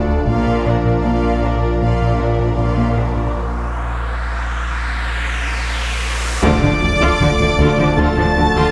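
A steady, straight four-beat pulse moves at an unhurried pace in this brooding, tense cue from a hybrid orchestral and electronic film score. Very quiet, close and dry taiko drums strike with heavy sticks at the opening, over a dark foundation of clean sine sub bass, a round analog bass riff with a filter pluck, a rich cello section and a faint, biting double bass section. Lush bowed strings fill the middle, with an intense, vibrato-laden violin line carrying a second voice above rich, smooth violas. A hollow, flute-like pad with chorus and a mellow French horn section hold sustained chords in the background. An electronic riser builds from 2.4 seconds through a break in the drums, and at 6.4 seconds an impact lands as the taiko returns, a distant chamber violin section takes up a high, smooth melody, and tight trombones and a soft-edged tuba join the low brass. A wet concert hall reverb bathes the recording, and the passage is cut from a longer piece.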